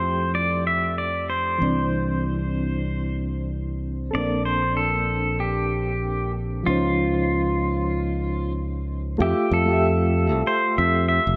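A relaxed 95 BPM 4/4 groove with a 16th-note swing carries this sunny sunset chillout excerpt in F major, where a twangy, fingerpicked pedal steel guitar sings the melody with slide and volume swells through digital delay, soft mellow electric-piano-like synth keys add chorus, tremolo and delay beneath, a growly, up-front fingered electric bass anchors the low end, and a lush hall reverb surrounds the parts as the chords move from Fmaj9 through Cadd9, Bbmaj9 and Dbmaj9 before returning to Fmaj9 at 9.2 seconds.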